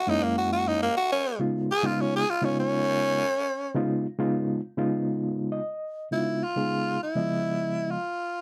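A straight 4/4 blues groove, rollicking yet laid-back, runs through this short cut from a longer piece. A raspy, bright tenor saxophone sits close-miked and up front with vibrato, soloing from the start over Gb9 and Db9 chords. Beside it, an overdriven reed electric piano, reedy and mellow through a combo amp with fast tremolo, accompanies and adds a fill from 5.2 seconds, all within a moderate studio ambience, before a new section begins at 6.1 seconds.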